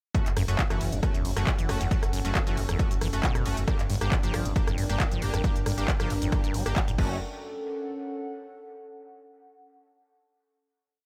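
A punchy four-on-the-floor kick drives this relentless, industrial peak-time techno piece at 136 BPM in 4/4, with programmed claps and rim clicks alongside smooth hats, ride and crash pumping against it, while a growling FM bass rolls in sixteenths and a squelchy, resonant acid line with accents and slides pushes through dub echo. An edgy, nasal sync-sweep polysynth stabs dotted-rhythm chords in one parallel shape, moving from F#m to Gm, and a warbling, lo-fi tape-like pad drifts in at 0.9 seconds with chorus and phaser. The drop runs until 7.2 seconds, after which the nostalgic pad rings out alone to close at 8.9 seconds, all in a dry mix.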